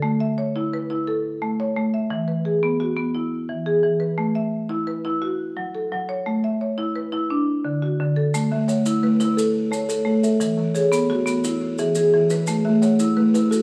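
A steady 12/8 pulse drives this hypnotic southern African traditional piece, built on an interlocking mbira-style cycle cut from a longer work. A woody marimba played with medium mallets carries the arpeggios alone from the start, with a gentle hollow-box buzzing kalimba joining at 8.5 seconds to add its own ringing, plucked arpeggios up front. Grainy maracas come in at 8.3 seconds, and a recital hall reverb wraps the whole in a warm, mellow space.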